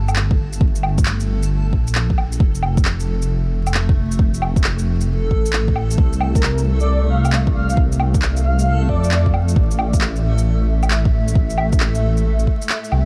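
A dark, detuned sawtooth bass sits up front in this melancholic, rainy future garage piece, rumbling between F1 and F2 with a beating, sidechain-pumped pulse at 134 BPM in 4/4 with a swung sixteenth feel. An overdriven electronic kick and a layered kit of electronic shaker, woodblock and handclaps drive the groove, while a reversed, dreamy swelling texture hovers through its own reverb. A breathy, flute-like synth lead with chorus, vibrato and tape echo appears from 6.4 to 9.3 seconds, and a cloudy, granular pad with 12-bit sampler grit and sidechain pumping enters at 6.8 seconds, blurred and mellow in the background. The chords move from Gm to F, then Csus4 and A5, all under a layer of vinyl crackle in a dry room. The kick drops out at 12.7 seconds as this cut from a longer piece closes.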